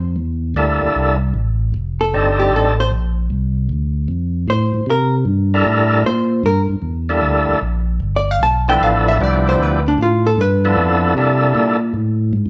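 A swung 4/4 groove at 153 BPM drives this bluesy, soulful soul jazz organ trio excerpt in C mixolydian, cut from a longer piece, with a fat, clean tonewheel organ bass line sounding through a slow rotary speaker from the start to 12.5 seconds. Above it, a thick, lightly overdriven percussive tonewheel organ carries the melody with key click and third-harmonic percussion, while a picked, compressed hollow-body electric guitar adds clean accompaniment from 2.0 seconds over chords moving through C13, F13 and G13. The band plays live together in a large studio room with moderate reverb, every part sitting up front.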